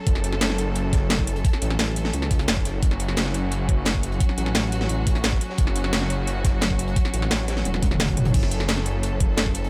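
Dark technical drum and bass at 174 BPM in F# minor, this aggressive, futuristic excerpt rests on a single F# minor chord held by a rich chamber string section whose bowed, lightly vibrato-touched chords pump against the sidechain, while a thick, detuned sawtooth bass sits up front with chorus and tube saturation. The drums stack a knocking electronic kick, an up-front electronic kit with a cracking snare, metallic hats, crash and toms, and a very quiet, gritty acoustic breakbeat layer with a high-tuned snare, the electronic parts carrying a tape-warm small-room colour. A drum fill breaks through from 7.7 to 8.3 seconds, all set in studio reverb.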